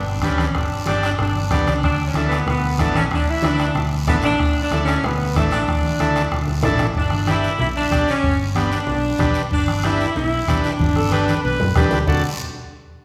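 Cumbia at a brisk 187 BPM, danceable and festive, cut from a longer piece, where an up-front, mellow saxophone section carries the melody with light vibrato over a dark, round hollow-body bass, a buzzy vintage combo organ, a soft-beater bombo, bright low-tuned congas set back in the mix and a raspy, close guiro, with drum fills at 5.7 and 10.8 seconds, a reedy accordion second line arriving at 11.0 seconds, and the whole band bathed in the wet reverb of a recital hall.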